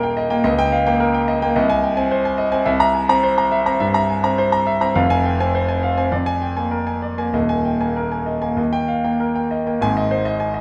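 A clear concert grand piano carries this brief excerpt alone, ringing out from 0.0 to 10.6 seconds with a natural, up-front presence and a deep bass that reaches down to Eb1 while its upper register extends as high as Bb5. The music is a classical virtuoso piano study in Ab major, brilliant and heroic in mood, moving in 4/4 at roughly 94 to 110 BPM with a flexible rubato feel. The harmony travels from Eb7/Db through Ab/C, C7, Fm and Bb7/F, then settles on Ebsus4 and Eb before arriving home on Ab at 9.8 seconds. The instrument is tuned slightly high, with A4 at 444 Hz. A wet recital hall reverb with a 1.6-second decay surrounds the piano, giving the performance a spacious, concert-stage sense of place as this fragment of a longer piece unfolds.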